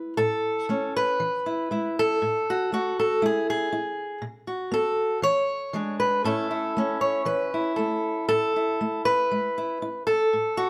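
Folk music for solo fingerstyle acoustic guitar, this short, pastoral and peaceful passage is cut from a longer piece and runs in a straight 4/4 feel. A fingerpicked steel-string acoustic guitar carries everything on its own from the start to 10.7 seconds, spanning A2 to C#5 and sitting up front in the mix. Its tone is warm, with a concert-instrument presence, and a light reverb lends a touch of air around it. The harmony moves through A, E and E/G#, touches B5 and E7, and briefly drops to unharmonized moments before settling back on A. A repeat of the opening section begins at 8.3 seconds on an A5 chord before the passage breaks off on E/G#.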